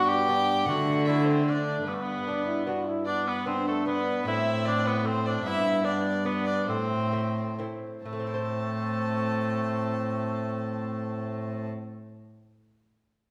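Classical renaissance-style consort dance in triple metre, rustic and courtly, where a gut-strung period violin carries the melody over an up-front cor anglais second line with light vibrato, a bright, distant trombone, a delicate fingerpicked double-strung lute and a rich, reedy bowed cello bass, set in a reverberant church-like hall, the music slowing between 4.9 and 8.1 seconds before the lute rings on alone until 12.5 seconds in this fragment of a longer piece.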